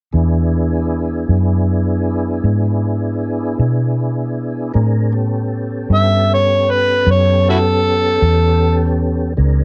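An amplified, overdriven harmonica carries the gritty melody from 5.9 s, up front with light vibrato, tongue slaps and a jazz-style feel, in this swaggering slow blues at 52 BPM in 12/8. Beneath it, a smooth, clean tonewheel organ holds sustained chords through chorus vibrato and a slow rotary speaker, with audible key click, while a round, foam-muted vintage electric bass sits forward with a dark, amped tone. The harmony moves from E7 to A9 at 4.8 s, and the warm production, with light reverb, is cut from a longer piece.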